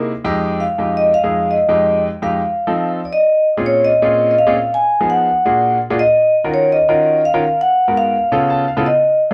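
Driving and sophisticated, this brisk jazz excerpt moves at 167 BPM in a straight 4/4, starting in F minor and shifting to Bb minor at 3.1 seconds as the harmony travels through rich minor ninths and altered dominants. An up-front vibraphone, played with medium mallets and the motor off, carries the melody with a metallic, ringing tone set in a boxy room sound and a touch of plate reverb. A clear, intimate baby grand piano accompanies throughout, its action noise audible, and adds a brief fill at 8.3 seconds, all within a dark production and a moderate studio reverb.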